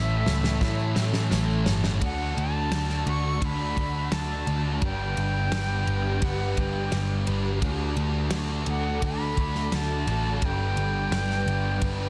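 A drum fill from a loose, small-room indie kit opens this wistful, blissful shoegaze and dream pop excerpt at 86 BPM in D major, as a bright, reedy concert flute with slapback echo carries the melody over an ethereal FM pad dressed in chorus, phaser and reverb. A jingly tambourine and a very quiet, double-tracked crunchy guitar fall away by 2.0 s, after which the chords move between Dadd9 and G. A biting overdriven guitar riff trails reverse reverb, a thick fuzz guitar sits in the background, and a round, foam-muted vintage bass stands up front beneath kick, snare and ride.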